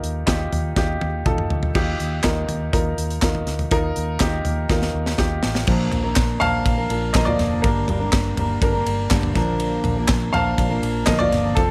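Anthemic and uplifting, this piano-driven pop excerpt in Bb major moves at 122 BPM in a straight 4/4, with a woody, up-front upright piano carrying the accompaniment over a dark, round, foam-muted electric bass and a polished studio drum kit with a punchy kick, high-tuned snare, handclaps and cymbals. Drum fills arrive at 0.8 and 4.7 seconds, and from 5.7 seconds the piano takes a solo while a full-bodied, fingerpicked steel-string acoustic guitar enters with a riff. The harmony moves from Ebadd9 to Bb and Gm, all set in a small room with moderate spring reverb.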